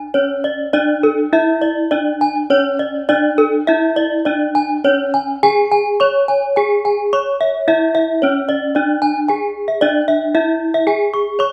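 Gamelan music in a C# pelog scale, tuned slightly above standard pitch, moves at a steady straight pulse of roughly 102 to 114 BPM in this hypnotic, brilliant fragment cut from a longer piece. Two bronze metallophones share the space, both struck with horn mallets and sitting up front with a bright, ringing tone. Their paired tuning produces shimmering beats that give the metal an airy glow. One instrument carries the melody in the middle register from the very start, while the second enters at 0.1 seconds with arpeggios reaching higher, colored by a tape echo that multiplies its strikes. The music shifts into a new section at 9.3 seconds and runs on until 11.5 seconds, all within a moderate studio reverb and a rough home-demo mix that leaves a faint mains hum beneath the bronze.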